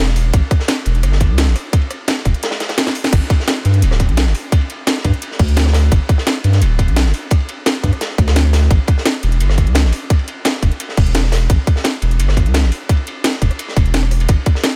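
A straight 4/4 pulse at 172 BPM drives this lush, dreamy piece of liquid drum and bass, cut from a longer track and sitting in the drop from the first second. An overdriven electronic kick, tight and up front, enters at 0.3 seconds and anchors the groove alongside a deep, thick sine sub bass that is saturated, sustained and fast in attack, ranging from D1 to G2. Layered over them, a produced drum and bass kit brings a cracking snare, bright hats, rim clicks and crash cymbals with an overdriven edge. Beneath it sits a quieter, gritty breakbeat kit recorded in a studio room, mid-forward with dark cymbals, a medium-tuned snare and a rolled-off top, its hi-hat, ride and snare thinned by high-pass filtering. A drum fill at 2.9 seconds leads into a band accent at 3.0 seconds, after which the drop carries on through to the end, all set in an audible studio ambience.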